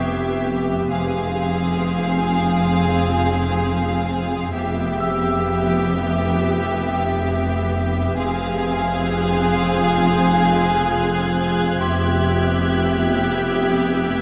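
In free time, this mysterious, uneasy suspense cue in F Hungarian minor drifts between Em/F and Fm. Violins carry the melody with vibrato while a second violin line sits up front. Viola, cello and double bass sections, a cloudy granular pad with its own reverb, a chorused analog drone and a bell-like celesta sit in the background. A high, focused violin texture touches in at the start and returns from 8.2 seconds, all within the wet wash of a scoring-stage reverb.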